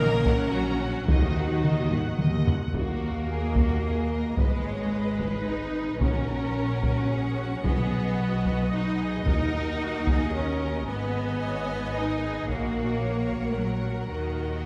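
A wet concert hall reverb wraps this dark, relentless cinematic orchestral excerpt, cut from a longer film score in a triple metre with a straight feel. The low strings sit up front and carry the weight: a rich, even cello section and a double bass section bowing with smooth vibrato, while a distant taiko ensemble struck with hard sticks in a large room drives underneath from 0.3 seconds. Above them, a dark, expressive violin section sings the lush melody, supported by a focused second violin line and a smooth viola accompaniment tucked in the background. A very quiet, mellow French horn section holds sustained chords throughout. Close, dry timpani with hard mallets and calf heads sound only at the opening, stopping at 1.9 seconds as a drum fill leads into the second section, where the harmony circles through Eb minor, Ab minor, Gb over Bb and B major chords.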